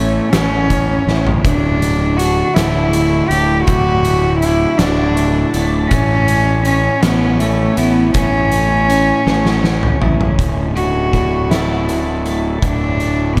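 Euphoric and cinematic, this slow post-rock passage in D major moves at 54 BPM in a straight 6/8, cut from a longer piece and drifting between A and Dsus2 chords. A rich, bowed solo cello carries the melody up front with a soft, floating sul tasto tone and analog delay, while a twangy, compressed twelve-string electric guitar picks clean arpeggios in the background through lush chorus and delay. A growly fuzz bass sits up front, and an oversized, low-tuned kit with a fat snare and punchy kick enters at 0.3 s and breaks into a longer fill at 9.3 s, all wrapped in a dreamy mix soaked in a huge ambient reverb.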